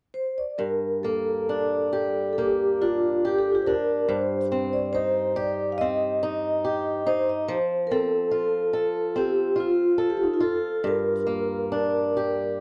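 A vibraphone played with medium mallets opens the piece at 0.1 s, carrying the melody of a mournful, haunting Celtic slow air in G minor. Its dark, ringing tone shimmers with a fast motor vibrato, and a slapback echo trails each note. At 0.6 s a fingerpicked, swing-style acoustic guitar joins as accompaniment, its boxy sound sitting up front beneath the melody. The tempo hovers around 70 BPM in 4/4, but the beats are uneven and the phrasing moves freely in rubato. The harmony moves from Gm to Cm/G, then F, and returns to Gm. The dry, close sound of a 1970s-style studio carries little reverb, and this short cut from a longer piece ends at 12.6 s.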